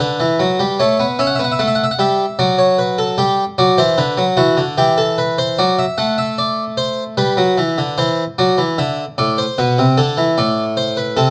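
A brilliant, plucked French-style harpsichord with octave strings sits up front and plays alone throughout this lively, joyful fragment of a baroque-style classical two-part invention in G major and 3/4 at 75 BPM, its mid-forward tone caught by close, detailed microphones in light reverb as the harmony moves from Em7/D through A7, G and D7/F# before shifting at 8.0 seconds toward C/E, Bm and Am.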